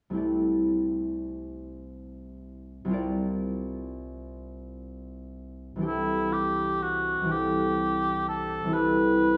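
A ringing, thumb-plucked concert harp opens this pastoral, dreamy impressionist duo in a lilting 6/8, its unhurried rubato drifting through lush sixth-and-ninth harmonies. At 5.9 seconds the oboe takes the melody in a short middle-register line, its tone warm with a light vibrato and a roomy, slightly distant quality. A wet recital-hall reverb surrounds the pair as if heard from further back in the room, and the passage is a fragment cut from a longer piece.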